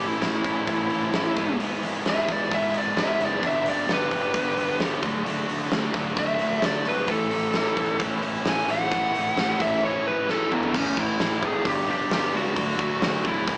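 Driving and confident, this classic rock excerpt moves in a straight, steady 4/4 from a longer piece. A dark, fuzz-laden lead guitar sits up front, playing a solo over the first 10.7 seconds, while two picked, overdriven rhythm guitars, one bright and one sludgy, hold down riffs in the background. A round, punchy fingered bass with fuzz and overdrive fills out the low end beneath them, and a huge arena drum kit enters at 0.2 seconds with a fat snare, punchy kick, bright cymbals, hi-hat and toms, closing the solo with a fill just before the song moves into a new section. The chords run from A through E/G#, G and D before returning to A, then settle on G and D in the closing part. The band sounds as if it is playing live in one room, with a pumping, hall-like ambience on the drums, a moderate large studio reverb and a small-speaker character to the overall sound.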